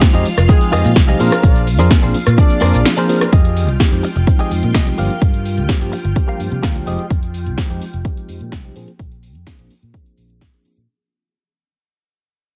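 An overdriven, punchy electronic kick and a tape-warm analog drum machine with hi-hat, rim click, shaker and snare drive this nostalgic, sensual filtered disco house cut at 127 BPM in F dorian from the very first beat, together with a phased tine electric piano, lush sawtooth string-machine chords and a bright, twangy clean guitar riff, each pumping through a low-pass filter over a growly fingered bass, while a mellow, tightly octave-doubled horn section carries a dub-echoed melody from 0.5 to 2.9 seconds before a brief break gives way at 3.3 seconds to a filter sweep and fade-out over Fm9, Gm7 and Bb9 chords.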